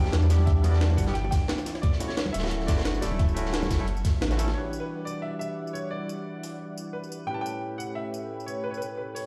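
Heard as if through a big sound system in a bare room, with a large studio reverb, this melancholic, dreamy stretch of liquid drum and bass runs at 176 BPM in E dorian, moving through Em9, Dmaj9 and A9. A clear, worn baby grand piano carries the melody, with audible action noise and dub echo. Beneath it sit a barky tine electric piano through a combo amp with tape echo, and a lush, detuned unison pad that pumps against the sidechain and takes a filter sweep from 4.6 seconds. The opening drop pairs a deep, round sub bass and a knocking, up-front electronic kick with ringing bongos and congas and a saturated breakbeat kit with filtered hats and snare, alongside a gritty, pitched-up sampler-style jungle kit of hi-hat, ride, snare and tambourine. The band hits an accent at 4.2 seconds, and the jungle kit carries on until 9.2 seconds.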